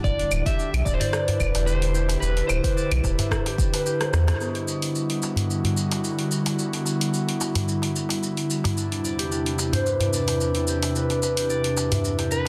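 A lightly swung 16th-note groove at 110 BPM in 4/4 drives this earthy, meditative organic downtempo piece in E minor, cut from a longer work, where a deep, tape-warm electronic kick and a round sine sub bass pump against an airy, breathy, chorused pad through Cmaj9, Em9 and Cmaj9/E while a ringing fingerpicked concert harp arpeggiates through digital delay and a filter sweep, a dark, slightly broken-up electric slide guitar carries the tape-echoed melody, and a produced deep house kit of claves, hi-hat, rim click and shaker (its snare softly clipped) shares the pulse with a close, dry clay darbuka. The kick drops out at 3.7 seconds, and after a drum fill and band accent the bass follows at 4.3 seconds, as a metallic, slowly beating bronze singing bowl enters faintly in the background at 4.4 seconds amid moderate digital room reverb and a dense, heavily limited master.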